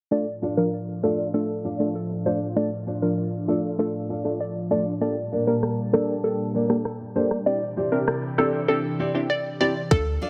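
A hollow square-wave pluck melody with chorus and delay opens alongside pumping, wave-folded chord stabs, a breathy phased pad and fingerpicked nylon-string guitar arpeggios in this bouncy, hypnotic 98 BPM dancehall excerpt in D minor, moving through Dm, Gmadd9 and Cadd9 under a light reverb and filter sweep before an electronic island pop kit with tight kick and rim click arrives at 5.6 s and a deep, boomy 808-style bass lands at 9.9 s.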